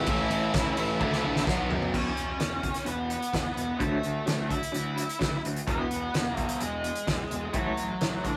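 A rough rehearsal-room recording with warm saturation and moderate reverb carries this cathartic, bittersweet quiet-loud alternative rock excerpt at 128 BPM in E mixolydian, where a dark, up-front octave-fuzz lead guitar sings the melody over a loose indie drum kit with a punchy kick and fat snare and a growly fuzz bass, while crunchy overdriven and bright double-tracked fuzz guitars play a riff until 1.9 seconds, a drum fill begins at 1.0 seconds, and a twangy lo-fi guitar through a small old amp takes up tremolo arpeggios from 1.9 seconds.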